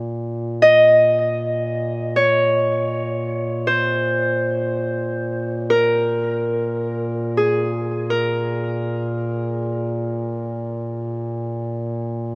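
A bright, fingerpicked Celtic harp carries the melody up front, its ringing acoustic notes moving between Ab4 and Eb5 from 0.6 seconds to 11.9 seconds. Beneath it, a mellow duduk in folk style holds a low drone on Bb2 throughout the 12.3-second passage. The duduk is also up front but sits lower in level than the harp, with a smooth top to its tone. This short passage, cut from a longer piece, is a Caucasian folk lament in Bb minor, played in free time with tuning set at A4 = 441 Hz. The mood is mournful and full of longing, and a wet cathedral reverb with a 6.3-second decay places the sound in a vast, echoing space.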